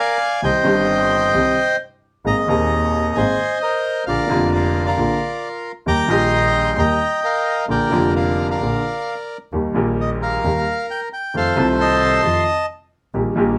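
A moderate studio ambience with a short room decay captures a small band playing live together in one room. The piece is a tense, sultry tango in Eb major at 132 BPM in 4/4, taken with a rubato feel and cut from a longer performance. The bandoneon carries the melody from the very start, its reedy, mid-forward tone sitting up front, and it drops out at 12.7 seconds. A clear, woody upright piano, also up front, supplies the accompaniment from 0.4 seconds, moving through Cm, Abadd9, Bb and Eb before landing on F7. Beneath them a single bowed double bass holds the low end with a biting, even tone, a smooth top and vibrato, sitting lower in the mix than the other two parts.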